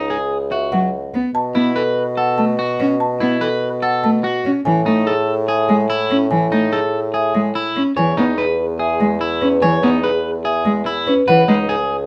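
Classical minimalist pattern music in E major at 145 BPM, hypnotic and propulsive, where a slightly broken-up, twangy electric guitar spins fingered arpeggios over a clear bassoon bass line, a woody marimba carries the melody with medium mallets on rosewood bars, and a rich, smooth bowed cello with vibrato joins at 0.7 seconds as up-front accompaniment, all heard through close, detailed microphones with light reverb as the harmony moves from C#madd9 through B7sus4, Amaj7 with its third omitted and Emaj7 back to C#m9 in this excerpt cut from a longer piece.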